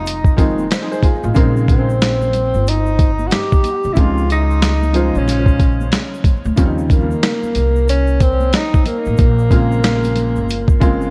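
An echo-heavy mix with light reverb and small room ambience frames this smoky, cool jazz-hop excerpt at 92 BPM in Bb dorian with swung 16ths, where a gritty, pitched-down boom bap sampler-style drum kit with a thumpy kick sits up front beside a woody, growly pizzicato upright bass, a bright, slightly detuned upright piano accompanies through tape echo, egg shaker and congas ring softly in the background, and a distant, breathy tenor saxophone carries the melody with light vibrato and scooped notes.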